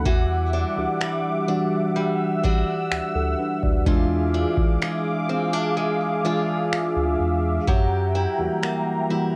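A mellow tine electric piano with a phaser, a smooth, detuned sawtooth pad pumping under sidechain, and a boxy picked archtop guitar playing arpeggios with finger squeak and tape echo open this late-night, longing contemporary R&B fragment at 63 BPM in E minor. A booming analog drum machine with a deep kick and finger snaps joins at 0.1 s, while a round, dark analog bass holds the low end until 8.5 s as the harmony moves from Em9 through E7b9 to F#7b9. The recording carries a home-cassette character with light reverb.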